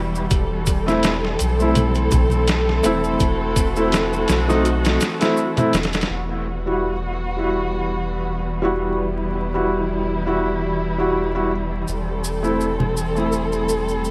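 A dark chamber string section and a deep, round dub sub bass open this brooding, smoky trip hop excerpt together, the bowed ensemble holding sustained chords with an expressive vibrato while the soft sub bass sits low and steady beneath it. Bright, hard-handed maracas and congas and a gritty, pitched-down sampler-style drum kit come in almost at once, the kit's thumpy kick, medium-tuned snare and hi-hat sounding compressed and tape-colored, as if re-recorded in a small room. At 0.9 seconds a felt-muted upright piano enters as accompaniment, mellow and intimate, its notes shimmering with tremolo and trailing tape echo. The harmony drifts from C6/E to Emadd9 and back, and at 6.1 seconds the drums and hand percussion drop away, leaving strings, bass and piano to carry the second half until the saturated congas and maracas return at 11.9 seconds. Vinyl crackle and light small-room reverb lend the whole mix a dusty, close atmosphere.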